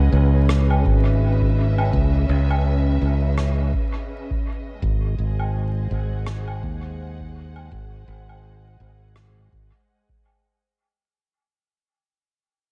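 Vinyl crackle and heavy echo fill a dry, close mix in this short, spacious cut of ambient dub at 83 BPM, with swung sixteenths, fading out across its full length as the harmony moves from C#m7 to G#7 at 4.8 seconds. A dark, woody string section holds lush bowed chords with vibrato and a gritty 12-bit sampler texture, while a bright fingered electric bass sits up front in a deep low register. A rim click and woodblock, set in a big-room ambience with dub echo, float quietly over a dry, deep analog electronic kick.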